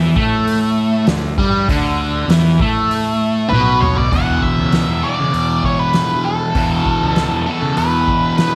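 A straight 4/4 pulse at 98 BPM drives this hypnotic, mysterious psychedelic rock excerpt in E dorian, where a double-tracked, compressed fuzz guitar riff sits up front over a round, overdriven fuzz bass and a soft-mallet drum kit with a boomy kick and fat snare in a big room. A drum fill at 3.5 seconds coincides with the entry of a dark octave-fuzz lead guitar carrying the melody with slapback echo, as the harmony moves from D5 to E5 at 4.1 seconds. Light reverb and studio ambience frame the dark, distorted tones of the cut-off passage.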